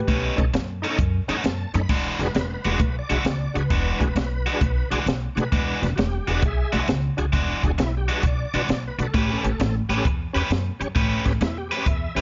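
A dry, close-sounding recording with a dark, rolled-off top end carries this soulful, gritty electric blues shuffle at 132 BPM in E mixolydian, heard as a cut from a longer piece. Up front, a woody, thumpy pizzicato upright bass anchors the low end while a picked, overdriven stack guitar with spring reverb drives the riff, and a compact acoustic kit adds a punchy kick, high-tuned snare and dark cymbals. A full, shouting tonewheel organ, lightly overdriven with chorus vibrato and a fast rotary speaker, plays a fill from 1.0 to 1.9 seconds before the chords move from B9 to E9 and then to A9 at 9.1 seconds.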